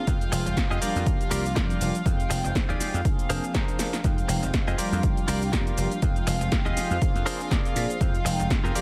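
Funky and sensual, this short cut of filtered disco house moves at 121 BPM in F dorian with a light 16th-note swing, cycling through Fm9, Gm7 and Bb9/F. A punchy, up-front electronic kick and a dry analog drum machine of snare, hi-hat and cabasa drive the groove under a foam-muted thumbed slap bass with tube saturation, while mellow, detuned synth brass with a dark filter sweep, chorus, phaser and cassette-tape grit pumps against soft, floating sul tasto violin chords. A twangy, scooped clean electric guitar enters at 0.3 seconds with a bright picked riff in spring reverb, adding a fill from 3.0 to 4.0 seconds that overlaps a drum fill at 3.8 seconds, all in a mostly dry mix.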